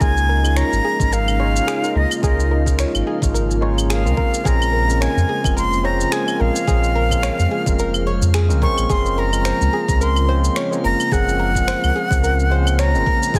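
Wistful and warm, this sunset chillout excerpt drifts on a lightly swung 4/4 groove from its opening second to its close at 13.4 s. A breathy, reedy concert flute carries the melody up front, close-miked with a crisp attack and vibrato, trailed by tape echo. Beneath it, a barky tine electric piano plays the accompaniment with light overdrive and vintage 12-bit sampler grit, while a silky string machine holds sustained chords in the background through phaser and ensemble chorus. A soft, round pluck spins gentle arpeggios with chorus and tape echo, and a very quiet glassy texture of drifting overtones hovers in the mix. The low end rests on a deep, round sub bass and a knocking electronic kick, with electronic shaker, claves and finger snaps adding detail, all under light reverb and a heavily compressed radio sound as the chords move from Db69 to Bbm7 to Gbmaj9#11.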